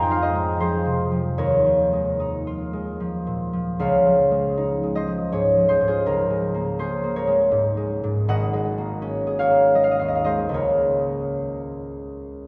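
A concert harp carries this serene, dreamy classical solo piece on its own, its fingerpicked strings ringing with a warm, acoustic tone that sits up front. The music moves in 3/4 at a relaxed 71-83 BPM with a flexible, rubato feel, settled in Db major and tuned to A4 = 443 Hz. Across its 12.5 seconds, the harp ranges from a deep Ab1 up to G5, drifting through Fm7, Eb9sus4, Dbadd9, Bbm7/Db and Ab9sus4 before coming to rest on Db6 at 10.5 seconds. A lush cathedral reverb with a long 4.0-second decay surrounds the instrument, and the listener seems placed further back in that vast, echoing space. This brief passage is cut from a longer piece, offering an unhurried, floating moment.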